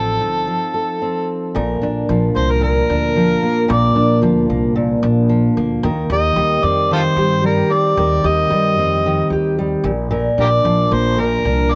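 An amplified, gritty harmonica with light vibrato and tongue slaps carries the melody up front over a dark, full-bodied fingerpicked jumbo steel-string guitar and a woody pizzicato upright bass, all entering together at the start of this sunny, heartfelt acoustic pop passage in Bb major at 112 BPM, which pauses for a brief break from 0.5 to 1.6 seconds before settling into its second section under a light reverb.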